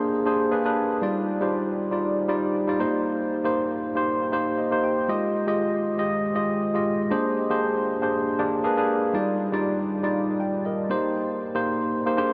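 A dreamy, reverb-soaked sound greets the ear, with a huge ambient space trailing every note for seconds. This short pop excerpt, cut from a longer piece, features a tine electric piano playing alone throughout its 12.3 seconds, sitting up front in the mix. The piano has a worn, slightly out-of-tune character, clean and heard through a combo amp, with lush chorus and tape echo adding shimmer. The mood is breezy and glossy, carried by a gently swung sixteenth-note feel and jazzy harmony that moves through chords such as Bb13, Ebmaj9, Cm7 and Fm9. A brief piano fill stands out at 4.3 seconds before the progression circles back toward its opening chords.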